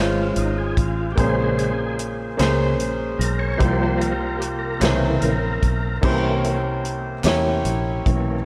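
Soulful and fervent, this slow gospel passage in 6/8 features a gritty, overdriven tonewheel organ, its fast rotary speaker and chorus vibrato carrying a solo through the first 6.0 seconds, over an intimate, up-front concert grand piano with audible action noise and a slapback echo. A round fingered electric bass and a distant soul drum kit with dark cymbals and a tight kick hold the bottom, while very quiet, crisp group handclaps join at 2.4 seconds. A lush hall reverb lends a big arena sound as the harmony moves from Dbmaj7 through Bbm9 to C7sus4 and C7b9.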